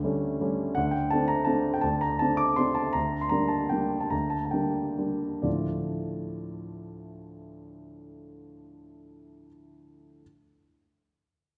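A warm, up-front grand piano opens this bittersweet, elegant classical waltz in D minor, playing solo in 3/4 with a rubato feel that moves between 120 and 174 BPM and spans from D2 to D6. The pace slows from 2.4 to 5.5 seconds as the harmony passes from A7 over D through D5 and G minor over D, settling on D minor at 5.5 seconds where a new section begins. A wet concert hall reverb surrounds the piano in this short excerpt from a longer piece, tuned to A4 = 438 Hz.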